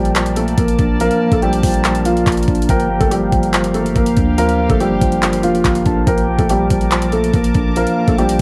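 Dreamy and wistful, this short cut from a longer hip hop track rides a half-time trap feel at 142 BPM in Bb major, drifting from Bbmaj7 to Gm7 and back to Bbmaj7 at 6.1 seconds. A felt-muted upright piano carries the melody with a soft, intimate tone through a low-pass filter and analog delay, while a mellow tine electric piano fills in accompaniment, its clean sound colored by a low-pass filter and cassette tape. High above, a round, octave-layered synth lead with vibrato and chorus traces a second line, sitting dark and back in the mix, and a detuned sawtooth pad sustains bright, evolving chords with a slow attack and long release. Underneath, a clean 808-style bass gives deep, boomy sine notes that decay into the background. The trap drum kit enters at 0.1 seconds, up front with a knocking kick, metallic hi-hats and handclaps, all of it bathed in digital ambience and the hazy grain of a home cassette recording.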